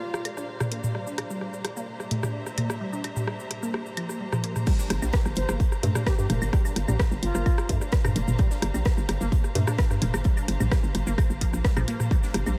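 Hypnotic and quirky, this minimal techno excerpt sets a squelchy, phaser-laced blip pluck under a filter sweep alongside a flickering grainy texture, a smooth bowed string section, a house drum kit, a booming tape-warm analog drum machine and brief airy baroque flute phrases in the background, until the drop at 4.7 seconds brings in a punchy up-front electronic kick and a faint acoustic rock kit with high-passed hi-hat and snare, joined a moment later by a hollow, bouncy FM bass with tube saturation and sidechain pumping.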